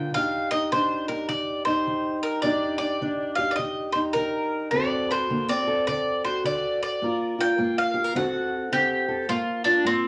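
A home cassette recording with moderate studio reverb carries this smoky, mournful acoustic country blues fragment at 105 BPM with a swung feel, where a bright, double-strung bowl-back mandolin picks the melody up front over a boxy parlour steel-string guitar fingerpicking the accompaniment through Ebmaj7, D7 and Gm7 changes for about 10.1 seconds.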